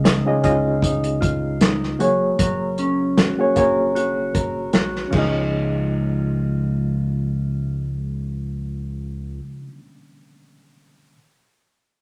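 A reedy, worn electric piano with fast tremolo accompanies this laid-back, nostalgic indie and bedroom pop excerpt at 77 BPM in Db major, joined by a dark, clean electric guitar with a warbly pitch drift, a round, deep analog bass and a punchy acoustic drum kit played with bundle sticks that stops at 5.3 s, as the chords move between Dbadd9 and Gbadd9 in a wet club reverb.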